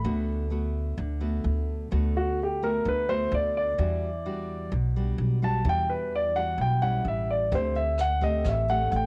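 Home-recorded on cassette with light reverb, this melancholic, wistful bossa nova fragment puts a grand piano up front, its melody carrying long sustain and a tape-tinged sheen, over a full-bodied, fingerpicked nylon-string guitar and a woody, dark pizzicato upright bass. The harmony moves from D6 to Em9, then A7 and D7sus4. At 7.5 s a distant, roomy brush kit with a boomy kick, hi-hat and rim click slips in from the background.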